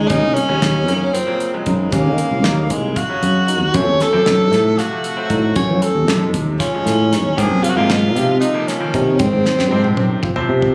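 In a straight 7/8 counted at 231 BPM in eighths, this bright, intricate progressive instrumental excerpt features an up-front warm tenor saxophone playing a jazz-style solo melody with vibrato, subtone and scooped notes, sweetened by plate reverb and digital delay, over a growly, punchy fretless electric bass, barky, lightly overdriven tine electric piano arpeggios and brilliant grand piano accompaniment with audible action noise sitting in the background, while a dry, tight 70s drum kit keeps time and plays a fill from 9.5 s, all moving through Ebm, Gbmadd9 and Ab7 and captured on a phone in a small, club-like room with compression.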